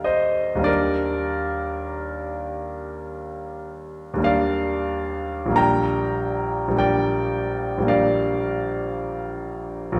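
Rubato in a slow 4/4 of roughly 44-57 BPM and tuned to A4 = 439 Hz, this serene, hazy fragment of impressionist classical solo piano gives a clear, polished concert grand with deep bass and audible action noise, spanning Bb1 to Bb5 as it drifts from Ebmaj7#11 through Ebmaj7 to Bb6 at 5.6 seconds inside the lingering wet reverb of a scoring stage heard from further back in the room.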